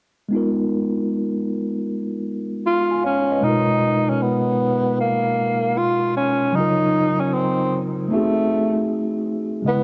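A swung sixteenth-note feel in 4/4 gives this hazy, melancholic hip hop fragment its unhurried lean. A mellow tine electric piano opens the accompaniment at 0.3 s, clean and up front, with a built-in-speaker character softened by a low-pass filter as it moves from G#m69 to D#m7 and then G#7b9. At 2.7 s a breathy tenor saxophone takes the solo melody in a jazz style, whispered and intimate, with soft attacks, scooped notes, vibrato and a smooth, filtered top. A moderate plate reverb with a long tail hangs around both parts. The production is dark and warm, and lossy compression artefacts add a worn, grainy edge.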